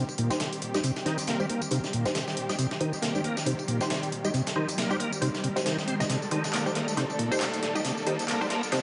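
Playful and funky, this breakbeat excerpt rides a swung 16th-note groove at 137 BPM in 4/4, resting on a C minor chord as the whole passage builds. A bright, shouting tonewheel organ sits up front with a riff, its clean tone carrying key click, chorus vibrato and a slow rotary speaker, while a filter sweep runs across it. Beneath, a dark, woody studio string section holds lush bowed chords played sul tasto with vibrato, pumping against the beat. Further back, a muted, resonant dub chord stab adds short, detuned plucks through a phaser and analog delay, with its own filter sweep. A gritty, tape-warm sampler-style drum kit with a thumpy kick and medium-tuned snare drives the rhythm alongside overdriven electronic tambourine and handclaps; a very quiet electronic riser creeps in at 2.5 s, and a drum fill arrives at 6.1 s. The mix is echo-heavy, bathed in a moderate echo chamber reverb with a digital ambience, and its top end is capped around 10.3 kHz.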